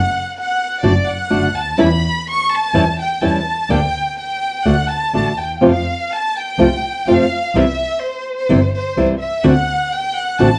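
A bowed chamber violin section takes the solo from 0.0 seconds, playing with vibrato and a soft, sul tasto touch, over a dark, close single bowed double bass and an up-front fingerpicked flamenco guitar with audible finger squeak that enters at 0.8 seconds, in a nostalgic, elegant rubato tango fragment at 126 BPM moving from D/F# through A7/E, F and C to D7, all heard through moderate studio reverb and the warbling pitch drift of worn old cassette tape.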